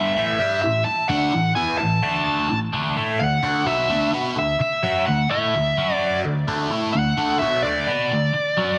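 A straight 4/4 pulse at 128 BPM drives this powerful, swaggering rock excerpt, cut from a longer piece. A cranked stack guitar plays the riff from start to finish, bright, picked and double-tracked, sitting up front with overdrive and a phaser coloring its tone across a range from G2 to B4. Above it, a dark, smooth lead guitar carries the melody between D5 and A5, picked and overdriven, also up front, with tape echo trailing its notes. The harmony moves from A5 to D5 at 2.0 seconds, swings between those two chords, and reaches F#5 at 5.8 seconds before settling back on D5. Both guitars sit in a moderate scoring-stage reverb with digital ambience, and the whole passage is pressed into a dense, heavily limited modern master.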